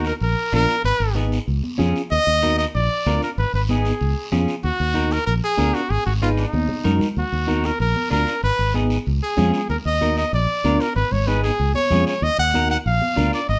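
A clear, up-front trumpet carries the melody over twangy, clean picked electric guitar, round fingered electric bass and a raspy guiro, with high-tuned, thick-skinned congas joining in the background at 0.5 seconds. This fiery, driving cumbia moves at a brisk 190 BPM in straight 4/4 and sits in Eb minor, cycling through Bb, Abm, Db and Ebm. The solo trumpet has a pop style and a light vibrato, while the punchy bass sits up front beside it and the guitar's accompaniment shimmers with harmonic tremolo. A short fill around 6.5 seconds leads into a repeat of the opening section. A moderate large-studio reverb gives the recording a sense of space, and the clip is cut from a longer piece.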